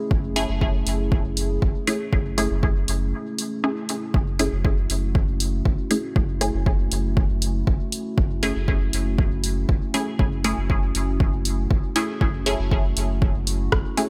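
Dub techno at 119 BPM in F# minor, this cavernous, hypnotic excerpt sits on a single F#m7 chord from the very start, tuned slightly flat of standard pitch. A dark analog pad holds sustained chords with a slow attack, its detuned, sub-octave body thickened by lush chorus and pumping through sidechain. A soft, round sub bass anchors F#1 with tube saturation, while a punchy, overdriven electronic kick drum sits up front, re-recorded in a large room and carrying studio reverb. Filtered dub chord stabs enter at 0.4 seconds, muted yet bright with a fast filter pluck and short decay, swirling through phaser and trailing dub echo. A layered deep house kit of hi-hat and rim click joins at the same moment, and a brief break between 3.1 and 4.1 seconds opens space in the groove.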